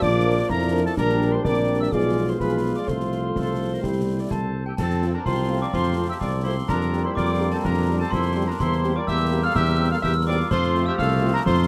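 This military-style march for wind band in F major moves at a brisk 126 BPM in a straight 2/4, with a festive, rousing mood, and it is a short passage cut from a longer piece. A mellow, slightly distant and roomy cornet carries the tune in classical style, while a pure, bright wooden piccolo with a soft attack, a warm, tight woodwind section set in the background, and a dark, very quiet euphonium supply second lines, the euphonium dropping out at 4.5 seconds. A bright, tight trombone section holds sustained chords behind them, and a French horn section with light vibrato fills in the accompaniment. Underneath, an up-front tuba with a smooth top anchors the bass, and a close, dry kit of concert snare, bass drum and clash cymbals with dark cymbals drives the march. At 4.3 seconds a metallic, bell-like glockenspiel struck with soft plastic mallets joins with a full, ringing second line. The harmony travels from Bb through a Bdim7 and C before settling on F as the opening phrase repeats, and the close, detailed microphones and little reverb keep the sound intimate.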